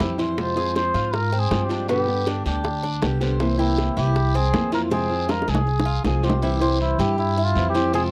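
A cup-muted trumpet carries the melody in a mellow, veiled jazz style, scooping into its notes over a nostalgic Cuban son and guajira groove in F minor at 159 BPM. A small, fingerpicked nylon-string guitar and a metallic, picked Cuban tres with doubled strings supply accompaniment and arpeggios, while a woody, dark pizzicato upright bass sits up front. Tight, high-tuned bongos play until 6.4 seconds, with a drum fill from 4.9 seconds, over a raspy, band-limited guiro, and the recording has a dry, close 1970s-style studio sound with light reverb, cut from a longer piece.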